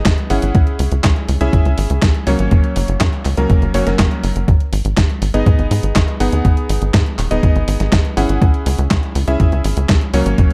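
Italo disco with a melodramatic, bittersweet air, this fragment sets a tight, nasal sawtooth sequencer bass with tube saturation up front against clangy, chorused electric grand piano stabs touched with tape echo, while a gritty, thumpy electronic kick and a detuned 8-bit drum machine's handclaps, hi-hat and medium-tuned snare, both re-recorded in a large room, drive a straight 4/4 pulse through G#m, C#m and F# in a dark, lightly reverberant mix.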